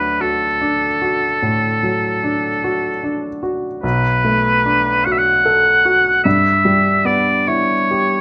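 Close, detailed microphones and light reverb give this 8.2-second excerpt of a romantic classical duo a present, intimate sound, with the oboe and grand piano both up front. Over a slow, rubato 12/8 pulse at 50 BPM in dotted quarters, the oboe sings a warm, lyrical melody in a clear, vintage tone with light vibrato and a soft attack. The piano's natural accompaniment, its action noise audible, moves from D to Bm7 at 3.8 seconds and Em/G at 6.2 seconds.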